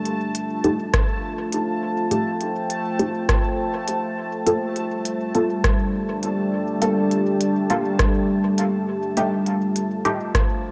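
Ambient dub in a spacious, meditative mood, cut from a longer piece, where a dark, detuned ambient pad holds slow-attack chords with chorus beside a resonant, bubbling stepped-filter texture, while crisp hi-hats and rim clicks from a tape-colored organic electronic kit and mellow, muted filtered chord stabs with phaser trail off in dub echo over a deep, up-front analog kick that enters at 0.9 seconds, all moving from F7 to Gm7 and back to F7 in an echo-heavy mix with moderate spring reverb.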